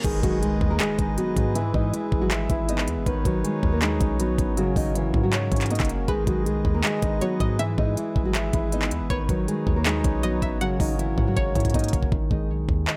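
A faint reverse cymbal and impact open this menacing, melancholic trap excerpt at 159 BPM in half-time and G# minor, as a dark, fingerpicked nylon-string guitar with delay carries the melody over a mellow, filtered baby grand piano, a reedy, breathing harmonium and a deep, boomy 808 bass. The trap kit sits up front with a knocking kick, crisp hi-hats, handclaps, rim clicks and crash. At 6.1 seconds a twangy, warbling resonator pluck with chorus, phaser and delay adds a bright second line, and a drum fill at 11.4 seconds leads into a brief close where the hi-hats fall silent, all within light digital reverb.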